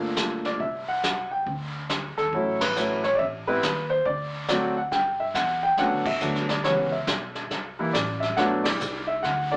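A clear grand piano sits up front and carries the melody in this playful, warm jazz piano trio excerpt, swinging at 139 BPM in 4/4 with a lilting eighth-note feel. An acoustic upright bass plays pizzicato beneath it, its woody steel-string tone holding down the low end at a lower level. The vintage drum kit is played with brushes, with dark cymbals, a medium-tuned snare and a punchy kick, all mid-forward and rolled off at the top, across snare, hi-hat, ride, crash and kick. The tune opens in D major and shifts to G major at 4.9 s, moving through chords such as Dmaj7, Gmaj9 and C#m7b5, with the full trio hitting accents together at points like 2.5 and 6.0 s. The band sounds as if it is playing live in one room with moderate studio ambience, and the whole recording has a compact, small-speaker character.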